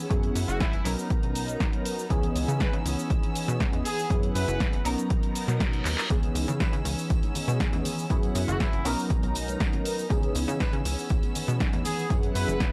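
A dry, gritty slice of nostalgic, funky filtered disco house, where a punchy electronic kick sits up front under a tape-warm house kit of handclaps, hi-hat, shaker and snare, a plucky sawtooth bass, a dark, detuned polysynth comp with chorus and phaser, biting bowed strings and a brilliant, tight horn melody carrying vintage sampler grit, all pumping against the kick, while a reverse cymbal and drum fill near 5.9 seconds bring in very quiet tambourine and congas at 6.1 seconds.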